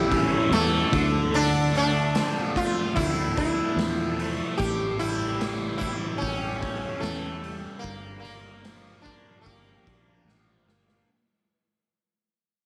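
A raw garage drum kit sets a straight 4/4 pulse with a punchy kick and a gritty, saturated sound in a pumping stone room, driving this mysterious, dark psychedelic rock passage cut from a longer piece, which fades out from 0.7 seconds and closes on a drum fill at 10.3 seconds. A round, foam-muted fingered bass sits low beneath a thick, double-tracked fuzz guitar riff coloured by distortion and phaser, while an up-front sitar carries the melody with a buzzing, shimmering tone and slapback echo. A very quiet tonewheel organ holds sustained chords through a slow rotary speaker with key click, over changes that move from A7 to Dmadd9, back to A7 and on to Gm7.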